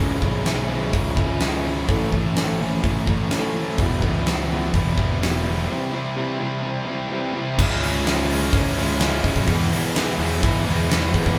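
A straight 4/4 pulse at 126 BPM drives this brooding, cathartic stretch of quiet-loud alternative rock in C# minor, with a huge arena drum kit up front from 0.2 seconds, its fat snare and punchy kick booming in a big room above a growly, overdriven fingered fuzz bass. In the background, a twangy, lo-fi guitar through a small old amp picks arpeggios until 7.6 seconds, while a warm, sludgy guitar and a thick, bright fuzz guitar pick out riffs, with a break arriving at 5.7 seconds. At 7.6 seconds a double-tracked distorted guitar riff and a very quiet, dark chamber string section holding soft bowed chords join in, the band heard playing live together in one room with moderate reverb.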